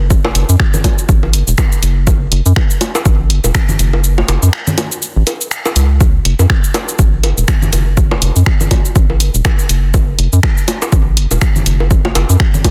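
A dense, heavily limited and nearly dry mix carries this quirky, sparse minimal techno excerpt, where a rubbery, nasal square-wave bass pumps with sidechain against an overdriven, up-front electronic kick that drops out from 4.0 to 6.0 seconds, while a punchy analog drum machine adds finger snaps, hi-hat, shaker and a soft-clipped snare, and tape-toned bongos and congas trail digital delay over a swung groove.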